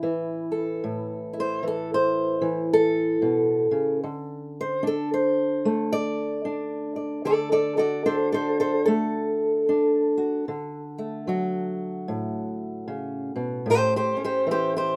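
A fingerpicked old ladder-braced acoustic guitar plays alone and up front for the full 15.0 seconds of this fragment of gritty, rollicking acoustic country blues at 75 BPM in a swung 4/4, its dark, woody, boxy tone and old strings ringing from A2 to D5 in light reverb as the harmony moves from A to D at 4.0 seconds and back to A at 13.7 seconds.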